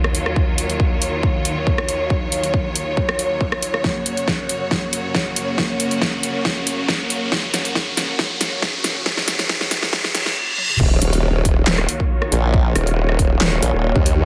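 Heavy wobble dubstep in Eb minor at 138 BPM with a half-time feel, chaotic and aggressive, as clear, lush, biting bowed strings with vibrato hold sustained Ebm7 and Gb chords through 12-bit sampler grit, sidechain pumping and a filter sweep, while a punchy electronic kick joins an overdriven kit with a huge snare and bright hats, a background riser and reverse cymbal build through a drum fill, and at 10.8 seconds an impact lands as an up-front formant-sweep wobble bass of sawtooth and sine, chorused and overdriven, drives the drop, with a second such bass joining at 12.3 seconds.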